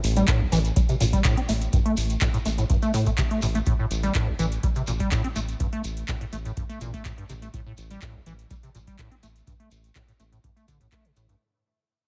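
A straight 4/4 groove at 124 BPM drives this short acid house clip in A phrygian. It sets a driving, trippy mood and fades out across its whole length. An electronic kick drum, deep and tape-warmed, joins at 0.3 s and sits loudest in the mix. Around it, a booming analog drum machine supplies handclaps and metallic hi-hats, re-recorded in a large room, while a grainy, mellow shekere adds a live-room texture underneath. A round, sustained analog bass holds the low end from A1 to A2 with sidechain pumping. Over this, a rubbery acid bass riff enters at 0.2 s and ranges up to C4, with a resonant filter pluck, tube saturation, lush chorus, cassette-tape grit, pumping and dub echo placing it dark and up front, all inside a light reverb.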